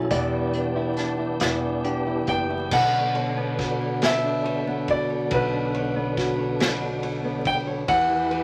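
An intimate, vintage-toned concert grand piano carries the melody in this melancholic, aching six-eight pop ballad in a straight feel, its action noise audible beneath a smooth, deep-bodied sound, and this short passage is cut from a longer piece. Beneath it, a small fingerpicked nylon-string guitar plays accompaniment while a full, lightly overdriven tonewheel organ holds sustained chords with chorus vibrato, key click and a fast rotary speaker. A bright, clean, compressed electric guitar, recorded direct, picks arpeggios in the background until 3.3 seconds. A woody pizzicato upright bass with steel strings anchors the low end, and an airy, polished acoustic kit played with bundle sticks brings a punchy kick, a medium-tuned snare, hi-hat and dark crash and ride cymbals in a small room. The harmony moves from Em7 to Bmadd9 at 2.7 seconds, settling on Em near the close, all wrapped in wet studio reverb and a layer of vinyl crackle.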